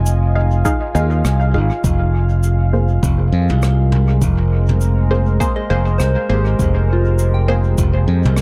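A bright, growly fingered electric bass sits up front in this hazy ambient dub excerpt, holding the low end across the whole 8.4 seconds in F minor at 101 BPM, with a swung 16th-note feel over a single Fm7 chord. Around it, a deep, warbling pad of sawtooth and sine layers sustains moody chords with a slow attack, softened by chorus and its own reverb. A muted, detuned chord stab with a fast pluck and phaser enters at 0.4 seconds, its dark tone thrown into dub echo. Rhythm comes from a tape-warm electronic kick re-recorded in a large room, together with a smooth brushed jazz kit of cabasa, rim click and toms, whose hits also trail off in dub echo. At 5.6 seconds a soft, pure FM bell adds gentle arpeggios, shimmering with chorus, phaser and echo, all set in an echo-heavy mix.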